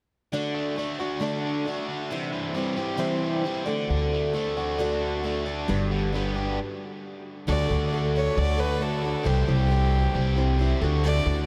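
A straight 4/4 rock pulse at 134 BPM in D major drives this jangly piece, which opens with a shimmering, octave-doubled twelve-string acoustic guitar playing picked accompaniment alongside a biting, double-tracked overdriven electric guitar riff. Woody pizzicato upright bass sits up front from 3.9 seconds, and after a brief stop at 6.6 seconds a bowed fiddle takes the melody at 7.5 seconds, rich and earthy with light vibrato and delay. The dreamy mix is soaked in a huge ambient reverb.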